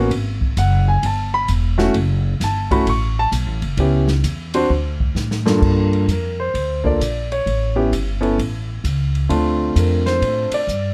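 Cool and late-night, this short swinging jazz piano trio excerpt opens with grand piano and woody, thumpy pizzicato upright bass sitting up front, while an airy, polished drum kit with dark cymbals and a boomy kick fills out the small room. A drum fill at 5.2 seconds leads into a piano solo from 5.6 seconds, moving through minor ninth, dominant seventh and minor seventh harmony. Close, detailed microphones and light reverb capture the trio.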